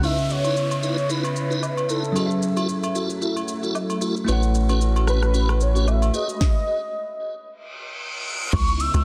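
A short amapiano passage in C# minor at 113 BPM opens on a single punchy log drum hit beneath a velvety, detuned sawtooth synth lead with chorus, tape echo and vibrato, carrying the melody over a bell-like, clean tine electric piano. Behind them sit a silky string machine with phaser, ensemble chorus and sidechain pumping, piping stabs from a lightly overdriven tonewheel organ with key click and fast rotary speaker, and an electronic afro-pop kit with a deep kick, sharp soft-clipped snare, metallic hats, shaker, rim click and crash, roughened by 12-bit sampler grit. Close acoustic agogo bells and woodblock tick along at a low level, swung on the 16ths, while an electronic downlifter sweeps underneath. The deep, soulful harmony moves from C#m9 through F#m7 and A69, where a round sine sub bass holds A1 from 4.3 seconds, before arriving on G#m7. A stop follows at 6.4 seconds, with a reverse cymbal rising into the return of C#m9 and a final log drum punch at 8.5 seconds, all set in light digital ambience within a dense, heavily limited modern mix.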